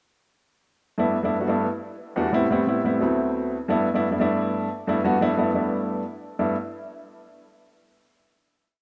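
Syncopated chord stabs in a straight, danceable 4/4 drive this short, lively jazz piece, played by a solo baby grand piano from 1.0 to 6.5 seconds. The piano sounds warm, polished and up front, voicing rich rootless chords that move through a brief turnaround before landing on a final chord at 6.4 seconds. A lush hall reverb adds space around the rough home demo mix.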